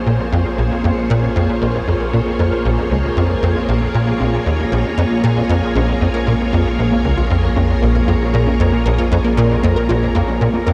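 A dark production bathed in a moderate shimmer reverb, with a 7.5-second decay, frames this mysterious, hypnotic stretch of ambient, sequencer-driven space music in Bb minor, cut from a longer piece. At 116 BPM in a straight 4/4, a tight, punchy sequencer bass drives the music from 0.1 s, its nasal sawtooth and square-wave riff sitting up front with ensemble chorus and analog delay. A vintage string machine holds a lush, full-bodied Bbm7 chord from the start, its slow-attack sawtooth ensemble thickened by a sub octave and chorus. Beneath it, a deep, round sine sub bass sustains a low Bb and fades in across the whole passage, colored by tube saturation. A very quiet detuned unison pluck, threaded with a noise layer, filter sweep and moving notch, traces arpeggios from 0.2 s, adding a faint glittering motion to the hypnotic, evolving texture.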